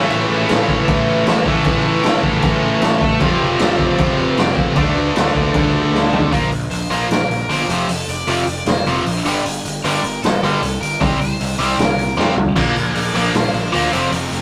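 A rough rehearsal-room recording with tube saturation and light reverb carries this aggressive, angry punk rock excerpt, where a raw garage drum kit with a boomy kick and a gritty, rolled-off top sits up front beside a tight, double-tracked distorted guitar riff, a growly fuzz bass, a very quiet high-gain guitar that drops out at 6.3 seconds and returns at 12.6, and an overdriven cranked stack guitar melody in the background, with the band shifting into half time from 6.3 seconds.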